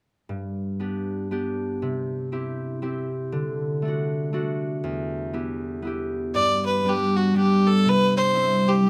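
Celtic folk waltz in G major at 119 BPM, lively and bright, with a light swing in 3/4. A ringing, fingerpicked concert harp opens alone from 0.3 seconds, moving through G, C, D and E minor, until a single bowed fiddle with a biting, nasal, earthy tone takes the melody up front at 6.3 seconds. Both sit in a small room with moderate reverb, and the passage is cut from a longer piece.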